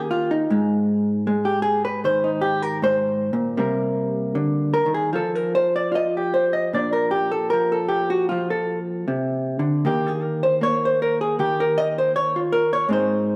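Cool and smoky, this short solo jazz excerpt features a single vintage hollow-body electric guitar, dark, clean and compressed, picked up front with a rubato swing and moving through chords such as Cm7 and Bb, all bathed in a wet echo-chamber reverb that places it further back in the room.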